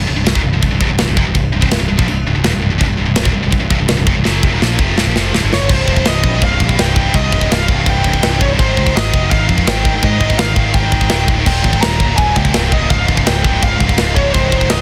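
Heavy metal excerpt at 166 BPM in C phrygian, dark and epic, where a scooped, double-tracked high-gain guitar riff and a growly, punchy picked bass open together, a tight drum kit with bright china and crash cymbals joins at 0.3 seconds and plays a fill from 4.2 seconds, and a distorted lead guitar carrying tape echo enters at 5.5 seconds to sing a high melody over chords moving from Cm through Ab5, Eb and Db, all in light reverb under a dense, heavily limited modern master.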